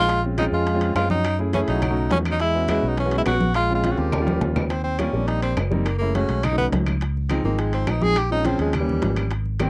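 Sunny and sophisticated, this short Afro-Cuban jazz clip at 208 BPM sets an up-front, vibrato-rich tenor saxophone melody over a background trombone second line that stops at 4.4 seconds, a round fingered electric bass, natural baby grand piano chords moving from Bbm7 through Gbm7 and B7, and a percussion bed of close, dry hard-hand congas and low-tuned bongos, ringing metal-shell timbales and distant woody claves, with a drum fill leading into the tenor saxophone solo at 4.7 seconds in a light-reverb, dry, close 1970s-style studio sound.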